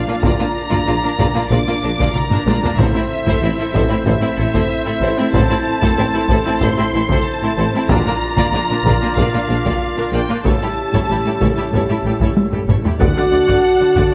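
A steady, straight 4/4 pulse at 94 BPM drives this epic, dramatic orchestral film-score cue in A phrygian, with a taiko ensemble struck with hard sticks and a vintage, band-limited edge, breaking into drum fills at 2.2 and 12.4 seconds. A lush, distant violin section carries the vibrato-laden melody over mellow French horns and woodwinds holding sustained chords, while a close second violin line, expressive violas, intense cellos, soft-attack double basses and a very quiet, roomy tuba fill out the background. Chords move from Bb through Am, back to Bb and on to A7 before landing on D at 13.0 seconds, all set in a moderate scoring-stage reverb, and the cue is cut from a longer piece.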